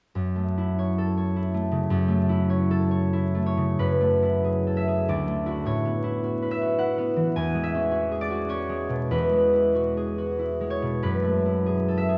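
In a flexible, rubato 3/4 that drifts between 86 and 111 BPM, this mysterious and gentle classical fragment, cut from a longer piece, features a solo concert harp, fingerpicked, ringing and up front, spanning D2 to G#5 in F# minor through colours like F#m11, Dmaj9 and E69, bathed in a long church reverb with a dark, warm production and a veil of vinyl crackle.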